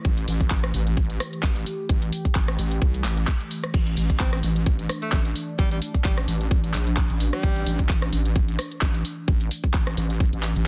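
A swung sixteenth-note groove in four drives this aggressive, swaggering bass house fragment, cut from a longer piece. A tight, overdriven electronic kick sits up front, layered with a gritty garage kit of crash cymbal, handclaps, hi-hat and rim click. Beneath it, a heavy, detuned wobble bass built from square and sine waves wobbles through the low register with a saturated, compressed bite, its chorus and sidechain pumping giving it a restless push. Far in the background, a bright, airy sawtooth pad with a noise layer and a resonant filter swell warbles through sustained chords, also pumping against the kick. From 4.2 to 7.8 seconds an edgy alto saxophone steps in for a short pop-style solo with light vibrato, trailed by tape echo. The mix is dense and heavily limited, set in a digital ambience.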